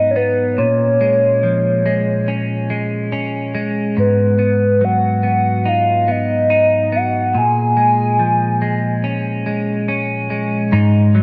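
A moderate, lush hall reverb wraps this short, hazy dream pop fragment in a soft, roomy glow. At a slow 71 BPM in straight 4/4, the mood is melancholic and hazy. A clean, compressed electric guitar sits up front, playing picked arpeggios through lush chorus and digital delay, and rings on until 11.2 seconds. Above it, a hollow, woody synth lead with a clarinet-like character carries the melody, its warbling vibrato, sub octave and noise layer giving it a dark, vintage tint, before it falls away at 9.0 seconds. The harmony sways gently between G#m7 and A#m7, lending the passage an unresolved, wistful feel.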